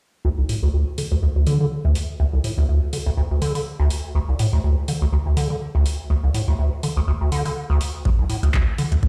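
A squelchy, resonant square-wave acid bass riff opens this raw, gritty acid house excerpt, sitting up front with a filter sweep running its whole length, its saturated tone colored by phaser and tape echo. An analog drum machine adds handclaps and metallic hi-hats in a shuffling 4/4 swing, and a deep electronic kick arrives only at 8.1 seconds. The sound carries the stony reverb of a big system playing in a bare room, cut from a longer piece.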